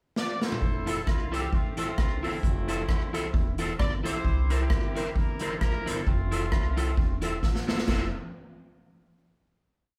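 Upbeat and cheerful, this short ska piece swings at 132 BPM in F major, with a clear, tight horn section carrying a motif-based melody of call phrases over an up-front street-band drum kit with a high-tuned snare, boomy kick and side-stick backbeat, a woody, growly walking upright bass with slides, a slightly broken-up off-beat electric guitar chop, and a background tonewheel organ chopping the off-beats through fast rotary speaker and slapback echo, all played live in one room with wet studio reverb before a final chord from 7.9 seconds.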